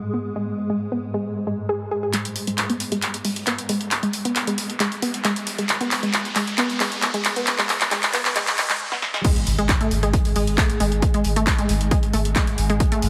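Driving peak-time techno at 135 BPM in G# phrygian, hypnotic and industrial, this cut opens on a swarming, detuned drone and a squelchy, resonant blip pluck riff whose filter sweeps through a G#m build-up. From 2.1 seconds a punchy analog drum machine with snare, claps, hats and crash carries the build, shadowed by a very quiet, dark acoustic jazz kit, while a faint riser climbs to a short break. At 9.2 seconds the drop lands with an impact, an overdriven electronic kick and a thick, saturated sub bass pumping under the drone, all set in a lush hall and a heavily compressed, radio-like sound.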